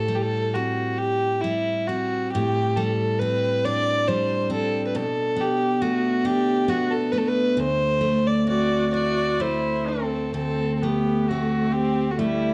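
Set in a slow 6/8 at 45 BPM counted in dotted quarters, this Celtic slow air moves with a free, rubato feel, haunting and mournful in mood. A dark, woody fiddle carries the melody from the start, its bowed line boxy in tone with a light vibrato, sitting up front between E4 and D5. Beneath it, a picked steel-string acoustic guitar gives full-bodied dreadnought accompaniment, also up front, reaching from D2 to G4 through chords moving from Am7 to D7sus4/A, Bm7 and D5. At 8.5 seconds a rich viola enters with a smooth, even second line, bowed with vibrato and set distant in the mix. A moderate recital hall reverb of 1.4 seconds surrounds the players, and the production leans dark and warm in this excerpt cut from a longer piece.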